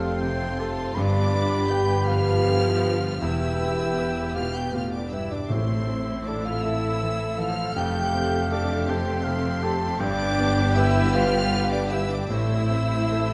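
Bathed in a wet scoring-stage reverb, this longing, moving cinematic cue for orchestra drifts in a rubato 6/8 at 53 BPM in A minor, with a high, vibrato-rich violin section singing the melody over a second violin line in the background, a pure, hollow flute and a vintage-toned solo oboe. Underneath, an intimate grand piano with audible action noise, smooth violas, a tight, mellow French horn section holding sustained chords and a very quiet ringing harp spinning arpeggios fill out the harmony, while cellos and a rich double bass section anchor the low end. Chords move from Fadd9 through G, Em and Am, and very quiet, articulate timpani sound from 5.5 to 6.6 seconds.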